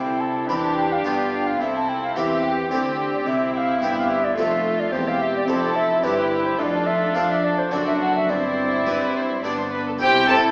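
Heard from further back in a wet recital hall with an AM radio sound, this brief excerpt from a baroque-style concerto movement at 108 BPM in 3/4 has a brilliant, festive mood, settling into C major from 3.3 s. An airy wooden flute with vibrato and a soft attack leads up front, joined in the melody by a background violin section while a second gut-string violin section carries a supporting line. A dark, nasal viola section and a full, plucked harpsichord fill the accompaniment above a bowed bass of background cellos and a rich double bass section.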